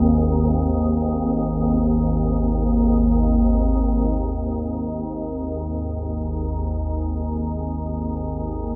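Desolate and unsettling, this short cut from a longer dark ambient drone piece unfolds in free time, led by an up-front, organ-like drone in the low register that warbles with a vintage, detuned unison quality, its slow attack and long release softened by ensemble chorus and built-in reverb. Behind it, a breathy, wind-like tuned noise texture drifts in the background until it stops at 4.7 s, leaving the drone to sustain alone through to 8.8 s. The whole sits in a vast, wet reverb with a dark, warm production.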